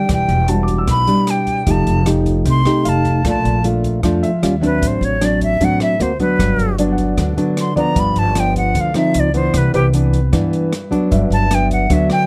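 Bossa nova with a sunny, sophisticated mood, this excerpt features an airy, crisp-attacked, unsteady silver flute with vibrato singing the melody up front throughout, over a thumb-plucked classical nylon-string guitar with audible finger squeak, a woody pizzicato upright bass, a dark, smooth jazz kit of hi-hat, boomy kick and rim click in a small room, and a vintage grand piano tucked into the background from 0.5 seconds, all captured close and dry through jazzy changes from Em9 to a closing Gmaj7.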